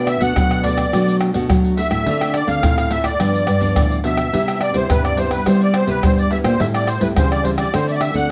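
Lightly reverberant, this sunny, festive 8.3-second excerpt of samba and choro at 106 BPM puts a reedy, shimmering musette accordion up front on the melody, over a fingerpicked nylon-string guitar whose chords carry audible finger squeak and a dark, full-bodied thumb-plucked nylon-string bass line, while soft-handed pandeiro, tamborim, egg shaker and a tight surdo, also up front in a live room, join at 0.1 s as the harmony moves from Bm7 through Dm7, G7 and Cmaj7 to Am7 and D7.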